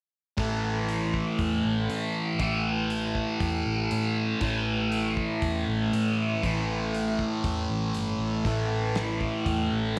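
A thick, bright fuzz guitar sits up front, double-tracked and drenched in distortion and phaser as it picks a riff between A2 and A3 on an A5 chord in this hypnotic, hazy psychedelic rock excerpt at 119 BPM in straight 4/4. Beneath it, a dark, round hollow-body short-scale bass is picked through an amp, ranging from G1 to A2, while a damped 70s drum kit supplies a fat snare, tight kick and hi-hat with a dry, rolled-off top. All three enter at 0.4 seconds and play through to the end of the cut at about 10 seconds, set in a moderate plate reverb with studio ambience.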